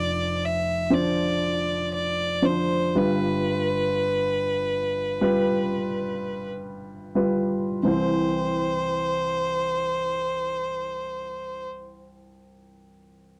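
Set in a straight four-beat metre, this acoustic folk-pop ballad moves at an unhurried pace that gradually slows through its opening 7.8 seconds before easing onto a resolving C chord. The mood is intimate and tender, and the clip is cut from a longer piece. A single bowed violin carries the melody with a rich, smooth, even tone and vibrato, sitting up front in the mix. Beneath it, an upright piano provides accompaniment with a warm, woody character, also up front, spanning a broad range from deep bass notes into the middle register. The violin falls silent at 11.7 seconds, leaving the piano to finish alone until 13.4 seconds. Light reverb touches the otherwise dry, close sound, which recalls a 1970s studio recording.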